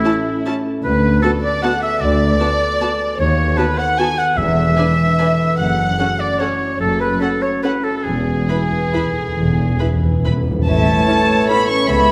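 A classical excerpt in A major and 3/4, elegant and festive, moving with a rubato feel between 130 and 164 BPM as violins carry a smooth-topped melody over a second violin line, an up-front oboe, background violas, a ringing thumb-plucked harp, and a woody cello section with a clear double bass section joining at 0.8 seconds. The bowed strings play sul tasto, the violins with a soft, intimate touch, in a reverberant recital hall, and close, dry timpani on calf heads add a brief stroke and then a fill from 8.1 seconds. At 10.7 seconds the harmony returns to A as an airy, very quiet flute group, a clarinet, a mellow bassoon and a horn section's sustained chords enter.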